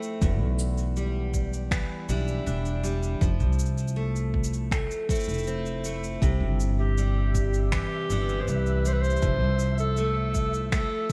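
A soft-attack clarinet, distant and roomy yet up front, enters at 6.8 s with a classical-style solo melody in this hopeful, pastoral folktronica piece at 80 BPM, cut from a longer work. Beneath it, a bright, full-bodied steel-string acoustic guitar picks arpeggios through lush chorus and diffuse ambient delay over Em7, Fmaj7 and Cmaj7. A woody, dark pizzicato upright bass, a deep, tape-warm electronic kick, and electronic cabasa and finger snaps re-recorded in a small room support it, while a grainy, flickering granular texture hovers in the background from 6.6 s, all framed by vinyl crackle and light small-room reverb.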